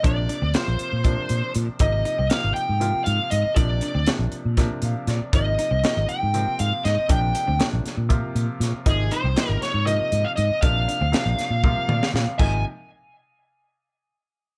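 Slick and bright, this electric jazz fusion cut, taken from a longer piece, races along at 238 BPM in 7/8 with a straight feel in Ab major. A smooth, overdriven lead guitar carries the melody up front with a picked, warm tone, while a bright, amped fretless bass sits just as forward underneath. The crisp drum kit is acoustic and saturated, with a high-tuned snare, a tight kick, hi-hat, toms and crash cymbals, all in a small, pumping room with a gritty edge. A clear grand piano with short sustain accompanies, dropping in fills at 4.6 seconds and again at 11.6 seconds, where the drums add a fill of their own. Beneath it all, a very quiet, clean, compressed electric guitar adds picked stabs as the harmony shifts between Bbadd9 and Abmaj7 colours before landing on Ab, with all parts playing until about 12.6 seconds in a dry mix.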